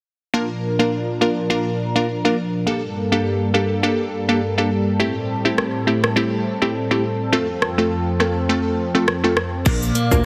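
A dense, heavily limited modern mix with light reverb carries this bouncy, tough dancehall piece at 103 BPM with a swung 16th-note feel, where crisp, wave-folded wavetable chord stabs and a smooth, detuned sawtooth analog pad with chorus move through Bb, Gmadd9, Am7 and F from the start, an overdriven electronic afro-pop drum kit with deep kick, metallic hi-hats, rim click, shaker and crash cymbal arrives up front at 5.6 seconds, and a clean, picked electric guitar playing arpeggios joins a punchy, saturated 808-style bass sitting in the background at 9.7 seconds, just before the piece is cut from its longer whole.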